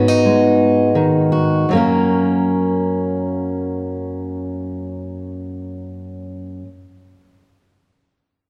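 A fingerpicked steel-string acoustic guitar carries this short folk excerpt alone, sitting up front with a warm, auditorium-like tone as it plays accompaniment from 0.0 to 6.7 seconds. The mood is hopeful and anthemic, set in F# major in 6/8 at 52 beats per minute, counted in dotted quarters with a straight feel. The opening passage slows down over its first 1.7 seconds on a G#m7 chord before settling onto F# as the second section begins. A wet concert hall reverb with a long two-second tail surrounds the guitar, giving the dark, warm production a spacious, resonant glow. The guitar ranges from F#2 up to A#4, lending the brief fragment both depth and a clear upper register.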